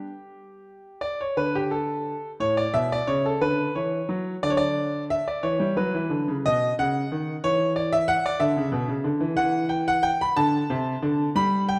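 Heard through a moderate recital hall reverb, the recording has a dark, warm production, with the solo concert grand piano placed up front and sounding clear and open, its deep bass carrying real weight. This is a classical, baroque-style suite movement in 6/8, taken at 60 beats per minute on the dotted quarter, with uneven beats and a rubato feel that lets the phrases breathe. The mood is radiant and flowing, and the piano, tuned to A4 = 439 Hz, spans a range from A2 up to B5. A brief opening phrase of about 1.4 seconds is followed by a restatement of the same material that runs to the end at 11.8 seconds, moving through A, D, E minor and B before settling on open fifths on E and then D. This short excerpt is cut from a longer piece.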